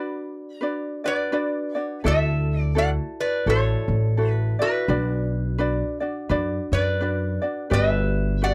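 Relaxed and sunny, this swung Hawaiian excerpt opens with a two-second break in which a bright, nasal metal-body resonator slide guitar, played with fingerpicks, carries the melody over a light, fingerpicked ukulele, until a woody, growly pizzicato upright bass joins at 2.0 s, the trio sitting up front in a dry, close 1970s-style studio recording.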